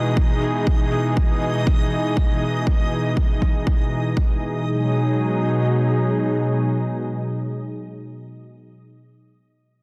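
Expansive and dreamy, this progressive house fragment at 120 BPM in G# minor rests on a smooth, detuned analog pad holding sustained chords up front, shimmering with subtle chorus and sidechain pumping as the harmony moves from Emaj7 to G#m7. A bright, reversed granular texture rises above it until 4.7 s, while a punchy, overdriven kick with a large-room tail drives the groove beside very quiet metallic hi-hats, both dropping out by 4.5 s. The pad then carries on alone under light reverb in a dense, heavily limited modern master.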